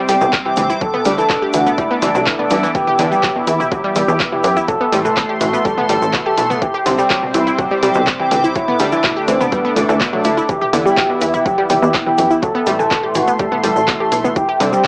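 An expressive, nasal synth lead carries the melody with vibrato and tape echo through this dark, melancholic melodic techno section at 124 BPM in E minor, cycling over Cadd9, Dsus2, Em7 and Am. Beneath it a bright, warbling unison pluck spins arpeggios, a funky, detuned analog bass drives the low end, and a punchy drum machine supplies handclaps, hi-hat and toms, joined by an electronic kick from 0.3 s and a grainy cabasa tucked far back. Fat, brassy synth stabs and a sweeping, resonant pad with a slow attack and a filter swell sit in the background, with sidechain pumping on the synths and a cassette-tape haze over much of the mix, leaving a lo-fi, small-speaker sound with light reverb.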